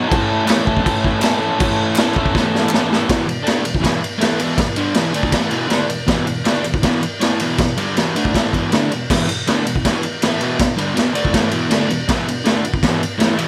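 Garage rock excerpt, raw and rowdy at 160 BPM, where a crunchy, double-tracked overdriven electric guitar riffs up front from E2 to A4 beside a boomy, gritty drum kit with a high-tuned snare, crash and ride, while hollow group handclaps sit very quiet in the small room until 2.8 seconds, a drum fill from 2.3 seconds leads into a new section at 3.1 seconds as the harmony moves from A to E5, all under light reverb.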